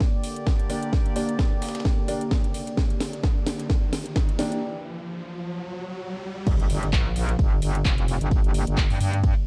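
Bass house at 130 BPM in G minor with a gritty, swaggering mood, this cut opens on a detuned sawtooth pad pumping under the punchy, up-front electronic kick, a house kit of cracking snare, metallic hats, claps and crash, and a very quiet, pitched-up breakbeat kit, while a dark, worn grand piano with audible action noise adds filtered, delayed stabs from 0.7 s to 4.6 s and a riser and impact carry the build from 1.8 s into the drop at 6.5 s, where an aggressive, saturated FM wobble bass takes the low end in a dark production with light digital ambience.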